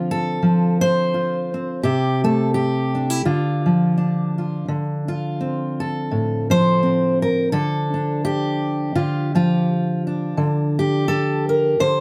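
Folk piece for solo fingerpicked steel-string acoustic guitar, a haunting and intimate fragment cut from a longer work. It moves at 84 BPM in 4/4 with a lightly swung eighth-note feel, settled in D minor. The dreadnought guitar sits up front, its tone bright and full-bodied, ranging from A2 up to C5, caught by close, detailed microphones with a touch of light reverb. The harmony circles around Dm7, Am/C and Dm, and a single phrase is stated and then repeated from 4.7 seconds, closing on D minor at 7.5 seconds. The whole passage lasts twelve seconds.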